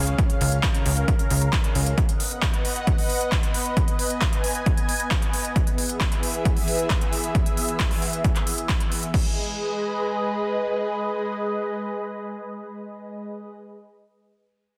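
A lush, detuned sawtooth pad pumping through chorus and phaser opens this emotional, driving uplifting trance passage in G# minor at 134 BPM alongside a punchy, funky filter-plucked analog bass that drops out at 1.9 s, while an overdriven, up-front electronic kick and a big-room dance kit of crisp hats, handclaps and crash cymbal drive the groove until 9.2 s, leaving the sustained pad alone as the harmony moves from C# through B and E to G# minor in a moderate, lush hall reverb and a dense, heavily limited modern master.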